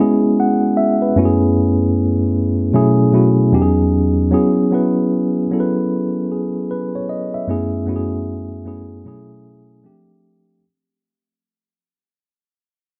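R&B at a relaxed 76 BPM with a swung 16th-note feel, this sensual, smooth fragment features a mellow, clean tine electric piano playing solo, up front and direct within a moderate plate reverb, moving through lush extended chords such as F#m11, B13sus4 and Emaj13 before fading out from 4.3 s to 10.6 s.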